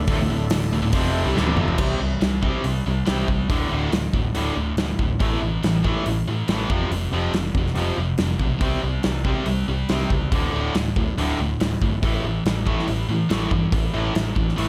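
A lightly reverberant small-room sound frames this menacing, heavy hard rock excerpt in D minor at 141 BPM in a straight 4/4, cut from a longer piece. It opens on a Dm chord, with a very quiet, gritty overdriven tonewheel organ holding sustained chords through a slow rotary speaker and chorus vibrato, alongside a warm, double-tracked sludgy guitar riff. Both of those parts stop at about 1.8 seconds, just after a drum fill from 1.4 seconds leads into the main section. From the start through 14.7 seconds, two guitars drive the riff: an overdriven semi-hollow guitar with a bright hollow-body bite, and a scooped high-gain guitar with heavy distortion, with the main section's power chords moving through C5, D5, A5 and F5. Underneath, a growly, punchy overdriven picked bass carries the low end, while a big, natural-sounding acoustic kit sits up front with a punchy kick, a medium-tuned snare, toms, hi-hat and bright crash cymbals.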